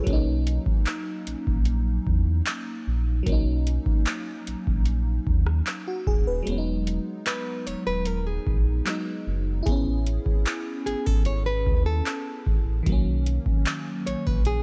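A booming analog drum machine sits up front in this smooth, tender contemporary R&B excerpt at 75 BPM in B major, its deep kick, metallic hats, handclaps and rim clicks carrying a tape-warm, gritty 12-bit sampler edge, while a full sine-and-triangle sub bass with an octave layer holds the low end. A lush, dreamy FM electric piano with a soft, detuned pad layer supplies the chords, moving from Bmaj7 to Amaj9 and back, coloured by chorus and phaser. After a break at 6.5 seconds, a fingerpicked nylon-string guitar enters at 7.3 seconds with full-bodied, fresh-stringed arpeggios through a delay, all set in a dark digital ambience.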